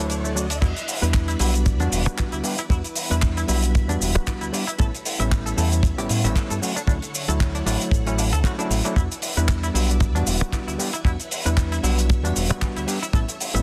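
A dense, heavily limited small-room sound frames this sleek, sensual nu-disco excerpt. A background riser opens it alongside an envelope-filtered fingered bass, a damped 70s kit with dark cymbals, cabasa, handclaps and hi-hat joins at 0.1 s, and the riser gives way at 0.6 s to a tight, dry, up-front kick. Throughout, a gritty, reedy overdriven electric piano with dub echo, a twangy clean guitar riff drenched in lush chorus, and a soft-attack sawtooth string machine pumping in the background ride over chords moving from Em7 to A7 and Dmaj7.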